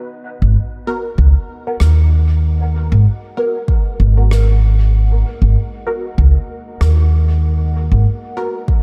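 Hazy and deep, this short ambient dub passage, cut from a longer piece, moves at 96 BPM in 4/4 with a light 16th-note swing, resting in G# minor on a G#m9 chord and tuned slightly under standard pitch at A4 = 439 Hz. A dark, moody pad of detuned sawtooth and sine layers with a sub octave, wave-folding and ring modulation fades in across the whole passage, holding long chords softly in the background through chorus and its own reverb. A woody, pizzicato upright bass with steel strings sits up front and carries the low end from 0.4 seconds. Filtered dub chord stabs with a resonant, plucked attack and a moving notch drift through phaser, ensemble chorus and dub echo with a muted, mellow tone. An overdriven, layered electronic kick, re-recorded in a small room, pushes forward from 1.2 seconds, while a faint acoustic rim click with a big-room sound and dub echo taps along until 6.9 seconds. 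The overall mix is dry and close, with little reverb on the whole.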